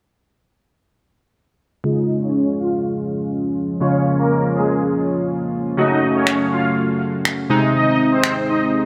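A detuned, evolving supersaw swell carries the melody up front through a low-pass filter and dub echo in this euphoric, carefree dance-pop excerpt at 122 BPM in Db major, over glossy, bright chorused retro synth keys with a fast, decaying attack and a shimmering, dark pulse-width pad holding sustained chords on Db, Gbm and Ab, while a filter sweep runs throughout, tape-toned electronic finger snaps join up front at 6.3 s, and a moderate concert hall reverb lends the sound space.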